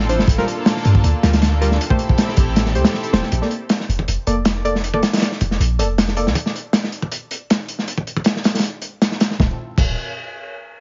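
A dark, raw drum and bass fragment with a jungle edge, set in a small, crackling room where vinyl noise sits over a dulled, capped top end. A crunchy acoustic breakbeat kit stays up front throughout, saturated and gritty, with a tight kick, a medium-tuned snare and dark cymbals, each trimmed by high-pass filtering. Beneath it, a boomy 808-style sine bass with a noise layer hits with a fast attack and decays into the depths. A lush, detuned sawtooth unison pad, airy yet bright under chorus and phaser, holds sustained chords over Gm7 and Am7 until 3.3 seconds. Soft chord stabs blending triangle, sawtooth and sine waves add an evolving, mellow color with a filter sweep, chorus, 12-bit sampler grit and dub echo, until they and the bass fall away near 6.3 seconds. After a chordless stretch carried by the drums, the bass and pad briefly return on a Dm7 at 9.4 seconds.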